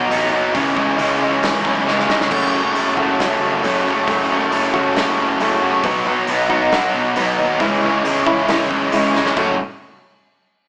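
A bright, double-tracked fuzz guitar sits up front in this cathartic, angsty slice of quiet-loud alternative rock, playing a compressed, distorted riff from the first moment through to the cut at 9.6 seconds. Beneath it, a picked electric bass growls with overdriven fuzz, while a big acoustic rock kit drives a straight 4/4 at 136 BPM with a punchy kick, medium-tuned snare, hi-hat and crash cymbal. A drum fill at 1.9 seconds leads into a new section at 2.3 seconds, where a warm, fingerpicked steel-string acoustic guitar joins with arpeggios over chords moving through F#m, B and C#m in F# dorian. Another fill near the end ushers in a brief closing section on F#m. The band sounds like it is playing live together in one room, with a moderate large-studio reverb and a small-speaker character to the overall sound.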